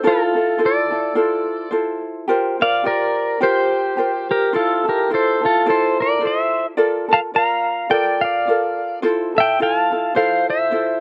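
Hawaiian music in F major at 107 BPM with a gentle swing on the eighth notes, this languid, sunny fragment of a longer piece sits on a dry outdoor sound. Up front, a clean, twangy electric pedal steel guitar carries the melody, played with fingerpicks, slide and volume swells, its compressed tone glinting over changes that drift from Fmaj7 through C7sus4 and Bbmaj7. Alongside it for the full 11 seconds, a light, thumb-plucked acoustic ukulele plucks out the accompaniment with a bright, close presence.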